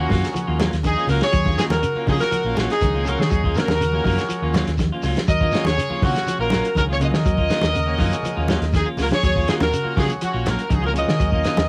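A clear, up-front horn section carries the melody from the first moment of this driving, defiant afrobeat excerpt in Eb minor at 122 BPM, held on a single Ebm9 chord, joined by a vibrato-tinged trumpet second line sitting in the background through analog delay, a buzzy, overdriven combo organ, faint bright semi-hollow guitar arpeggios and warmer semi-hollow guitar stabs, a round, punchy hollow-body bass, a muffled, dry soul drum kit with a tight kick, softly played ringing congas and a grainy shekere, captured as a lo-fi home cassette recording with light reverb.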